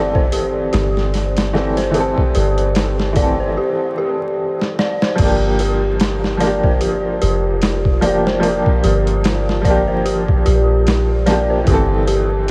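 Swung sixteenths at 74 BPM in 4/4 drive this cinematic, hypnotic trip hop excerpt in G dorian. A gritty, pitched-down, sampler-style boom bap kit with a thumpy kick sits up front beside a round, deep 808-style bass and a brilliant, woody upright piano colored by tremolo and tape echo. Eerie, inharmonic FM bell arpeggios drift through chorus and diffuse delay, while a faint, nasal bowed-like drone hovers only in the opening seconds. A break at 3.6 s ends with a drum fill leading into the Gm7 passage at 5.2 s, and the dreamy mix is soaked in huge reverb and vinyl crackle.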